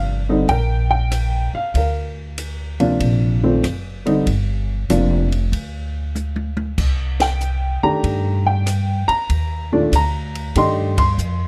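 Moody and smoky, this swinging jazz piano trio excerpt moves from Gm7 to Cm9. A dark, mellow baby grand carries the melody, intimate and up front with audible action noise and short sustain, beside a woody, thumpy pizzicato upright bass on steel strings. A compact acoustic cocktail kit, dry and natural with a high-tuned snare and punchy kick, sits lower in the mix, plays a fill at 6.2 seconds and joins band accents at 7.1 and 10.9 seconds, all captured with close, detailed microphones and little reverb.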